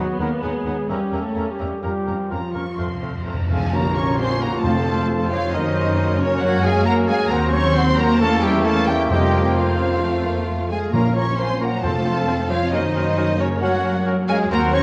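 The recording sounds like worn, warbling old cassette tape, its pitch drifting under a moderate scoring-stage reverb that gives this restless, dramatic romantic orchestral fragment a faded quality. A lush symphonic violin section carries the melody with expressive vibrato and a soft attack. A distant, pure flute group, a mellow cor anglais, a clear clarinet and a very quiet, close studio violin section with portamento weave second lines around it. Underneath, a roomy bassoon and a very quiet viola section accompany, a tight French horn section holds mellow sustained chords, and a dark trumpet adds stabs in the background. Woody, dark cellos and a smooth double bass section anchor the bass, while round, dry timpani enter at 2.8 seconds with a fill that leads into a band accent at 3.7 seconds, where a faint bright tam-tam and cymbal swell also sounds. The harmony churns through diminished and dominant chords in the minor key, driving the passage with a tense, urgent pulse.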